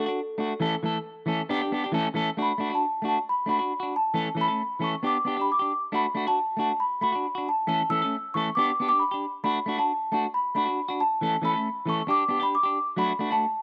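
A bell-like, sweet celesta carries the melody through this sunny, carefree highlife cut in D major at 136 BPM, its boxy small-room tone set against a clean, picked electric guitar sitting up front with harmonic tremolo. The celesta spans the full 13.6 seconds while the guitar drops out a moment before the end, both over cycling D, A and G chords and a moderate spring reverb.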